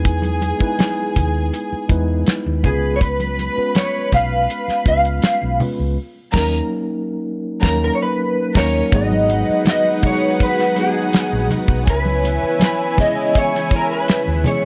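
A straight 4/4 groove from a damped, tight-kicked 70s drum kit and soft-handed congas carries this silky, lush 1970s-style soul fragment, where a round hollow-body short-scale fingered bass and a mellow tine electric piano sit beneath a dark, sul tasto studio string section; a slightly broken-up, lo-fi electric guitar with analog chorus carries the melody from 2.7 seconds, a band accent lands at 6.0 seconds, and a shimmering string machine of violins enters in the background at 8.9 seconds.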